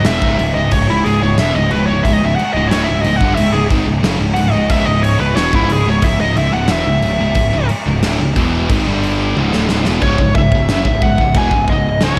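The high-gain lead guitar dominates this heavy metal passage, playing a distorted, up-front solo from the start until 10.0 seconds, its tone thickened by slapback echo and analog delay. Beneath it, two bright high-gain distorted guitars sit in the background holding down the riff on a C# minor chord, while a growly fuzz picked electric bass adds overdriven weight in the low register. A big rock drum kit with a punchy kick, medium-tuned snare, toms, crash and china cymbal sits up front with a mid-forward, rolled-off top, and a drum fill from 9.4 seconds leads into a new section at 10.0 seconds. The tempo is a steady 90 BPM in 4/4 with a straight feel, giving the music an epic, heavy weight. A lush hall reverb and a big arena sound frame the performance, with a faint mains hum in the background, and the piece is cut from a longer work.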